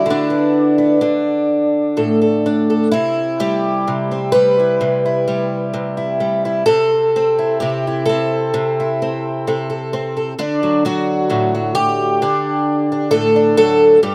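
Recorded outdoors and almost entirely dry, this short fragment places a single picked twelve-string acoustic guitar up front, its boxy parlour body and shimmering, octave-doubled strings touched by a slapback echo. It is solo folk fingerstyle playing at a rubato 64 BPM in 4/4, tuned to A4 = 444 Hz, and the mood is hopeful and warm. The guitar ranges from G2 to B4 and sounds alone throughout the 14.1 seconds. The harmony opens on a rootless G/D, moves to D5 at 1.0 seconds, settles on C at 2.9 seconds, and then passes through Am/C before arriving on D. The clip comes from a longer piece, so it feels like a brief, open-air glimpse of an unfolding tune.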